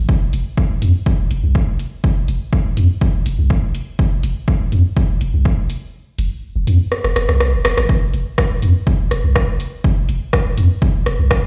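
Heard through a big sound system in a bare stone room with light reverb, this clinical, sparse minimal techno cut in F minor runs at 123 BPM in a straight 4/4, built on a deep, sustained sine sub bass with a pitch-drop attack and sidechain pumping, an up-front overdriven analog kick, and a punchy analog drum machine adding hi-hat and rim click through its own overdrive, with the kick dropping out from 5.9 to 7.9 seconds while a drum fill arrives at 6.9 seconds.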